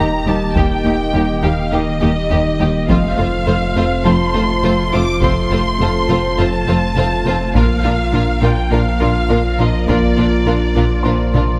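A tense, relentless cinematic hybrid orchestral and electronic film score cut at 103 BPM in 4/4, where a distant, vibrato-laden studio violin section carries the melody over a smooth second violin line, expressive portamento violas, lush low cellos and double basses, a deep saturated sub bass, a shimmering retro pulse-width pad with lush chorus, a very quiet ringing harp-like synth pluck playing arpeggios, and a soft felt-muted upright piano with delay and audible action noise, all moving through Eb, F and Bb chords in a moderate scoring-stage reverb, while heavy-stick taiko drums enter at 0.6 seconds and push into a fill at 11.3 seconds.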